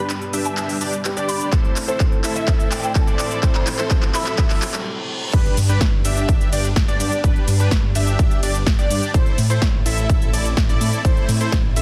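A punchy, up-front electronic kick arrives at 1.5 s and drives this euphoric, uplifting festival progressive house excerpt in G major at 126 BPM, where a huge, thick supersaw riff, a bold unison lead playing arpeggios, dark bowed chamber strings, a boxy grand piano and a woody mallet-like pluck build over a big-room kit of crisp hats, claps, shaker, ride and crash, with faint risers and a reverse cymbal, until the drop at 5.3 s brings in a menacing, beating detuned saw bass under G and Am chords.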